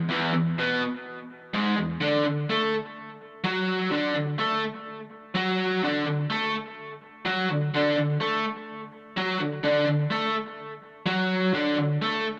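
A raw, bright electric guitar plays alone from the start, overdriven and double-tracked, with an analog delay trailing its picked notes. It sits up front in a moderate studio reverb, moving from an E chord to D at 2.0 seconds across a range of E2 to A4. This swaggering rock fragment, cut from a longer piece, runs about 12 seconds in a straight 4/4 feel.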